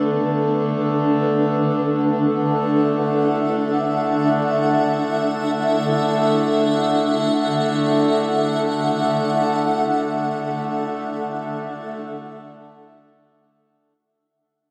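A cloudy, blurred granular pad holds sustained chords over a reedy, breathing hand-pumped harmonium drone from the first moment, both up front in a serene ambient piece in free time and D major, tuned to A4 = 439 Hz. The pad's detuned unison tone is mellow and evolving, with a moving notch and its own built-in reverb, while the harmonium sounds nasal and airy beneath it. A huge, wet reverb surrounds this short cut from a longer piece, which fades out from 9.2 to 13.8 seconds.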